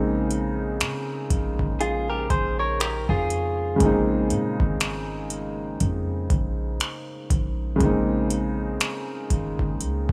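Moody and longing, this slow contemporary R&B excerpt rests on a felt-muted upright piano with audible action noise and a deep, boomy 808-style bass, while a booming, overdriven analog drum machine adds finger snaps, metallic hi-hats and a deep kick from 0.3 seconds, and a clean, direct-recorded electric guitar picks arpeggios through spring reverb and tape echo between 1.8 and 4.6 seconds, all over a Bbm11 chord in a light reverb.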